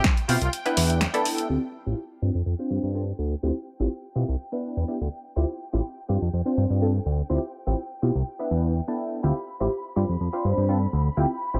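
Sensual and funky, this filtered disco house excerpt moves at 124 BPM in a straight 4/4, set in D dorian. A clear, tight trumpet section with light vibrato opens on a brief F4 with tape echo, while a punchy analog drum machine sends out a punchy snare and pumping hi-hats during the opening moments. A fat, thick analog bass enters at 0.3 s and stays up front, its sawtooth and square tones pushed by tube saturation and a moving notch. Through the whole excerpt a funky polysynth comp with a plucked filter attack and a mellow chorus-and-phaser sheen cycles through Dm11, Em7 and G7sus4, carrying a touch of cassette color. Above it sits a rich, smooth-topped bowed string ensemble, softer in the mix and grainy from vintage 12-bit sampling. From 1.5 s a filter sweep runs to the end, with sidechain pumping shaping every part, all set in light reverb and digital ambience.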